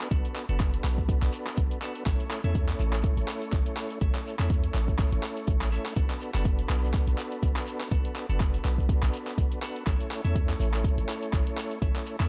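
A deep, boomy 808-style bass with sidechain pumping anchors this hypnotic, driving afro house excerpt in B minor at 123 BPM alongside an up-front electronic kick, a tape-warm deep house kit with handclaps and hi-hat, a grainy shekere in the background, and lightly overdriven tonewheel organ stabs with chorus vibrato and delay moving between Bm7 and A in a dark production.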